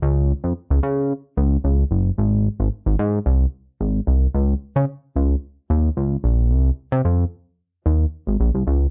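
A straight 4/4 funk groove at 111 BPM carries this feel-good, danceable fragment, cut from a longer piece, where a chorused synth bass plays alone for the full 8.9 seconds, ranging from Gb1 to Db3. The bass is retro and glossy, with a plucky filter, fast attack, sustained notes, pulse-width modulation and ring modulation, sitting mellow and up front. Light reverb frames a dry, close 1970s-style studio sound, and a new section begins at 4.3 seconds.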